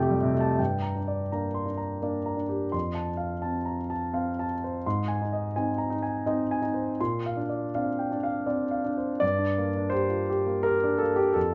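Neoclassical minimalist piano in G minor, intimate and melancholic, drifts in a rubato 3/4 at 84 BPM as a solo concert grand with deep bass, audible action noise and an up-front presence moves through Gm, F, Ab and Bbadd9 before returning to Gm at 9.2 seconds, set in a moderate large-studio reverb and tuned to A4 = 438 Hz in this brief fragment of a longer piece.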